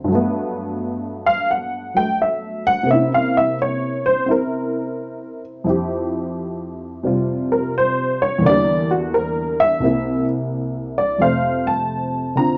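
Solo jazz at a relaxed 86 BPM in 4/4 with a swung eighth-note feel, played on a detuned, jangly honky-tonk upright piano whose woody, short-sustained tone sits up front across a range from C2 to Bb5. The harmony moves through Gmaj9, C7b9, Fsus2, Em7b5 and C7 before settling on F at 11.2 seconds, where a brief new section begins. A wet studio reverb and dark production lend this short, warm excerpt from a longer piece a vintage, unhurried glow.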